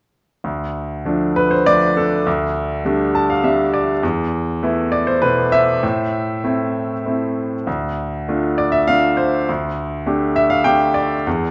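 A dark production sits in a moderate recital hall reverb, with a brilliant, up-front grand piano whose action noise stays audible and whose notes carry a long sustain. This bittersweet, moody solo classical piece, cut from a longer work, moves in a lyrical 3/4 at 100 BPM with rubato, tuned to A4 = 441 Hz. The piano spans D2 to A5 from 0.4 to 11.5 seconds, adds a fill at 2.8 seconds, and moves through Dm, Gsus2/D, Esus4 and Am before returning to Dm and Gsus2/D.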